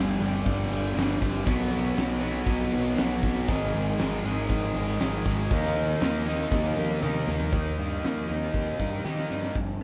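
A straight 4/4 pulse at 119 BPM drives this restless, cathartic quiet-loud alternative rock excerpt, tuned to A4 = 437 Hz, with a huge arena drum kit up front: a punchy kick, fat snare, bright cymbals and toms in a pumping hall, with fills around 6.5 and 9.0 seconds. A tight, double-tracked distorted guitar riff sits up front over a crunchy overdriven guitar soaked in spring reverb further back, while a growly, picked fuzz bass grinds beneath as the harmony moves through G5, B5, Ab5 and Eb5. At 7.5 seconds the crunchy guitar drops out and a twangy, lo-fi guitar through a small old amp adds slightly broken-up arpeggios over Eb, the whole band captured live in one large, moderately reverberant studio room.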